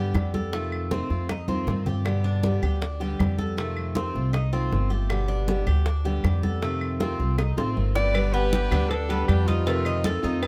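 A thumpy, dark upright bass sits up front in this relaxed, danceable fragment of Cuban son and guajira, its pizzicato gut strings anchoring a brisk 158 BPM in 4/4 with a straight feel in G major. A picked steel-string acoustic guitar plays accompaniment with an auditorium tone, while a Cuban tres weaves metallic arpeggios on its double strings, some doubled at the octave. Behind them, woody claves, bright thin-skinned congas and tight, high-tuned bongos and cowbell struck with hard hands keep a small-room groove in the background, with drum fills breaking through around 1.3 and 7.4 seconds. The harmony swings back and forth between G and F7 throughout. At 8.0 seconds a bright alto saxophone takes a pop-style solo with vibrato and scooped notes, joined by a very quiet, reedy chamber violin section playing a bowed second line in period style, both until 10.2 seconds. The sound is dry, with little reverb.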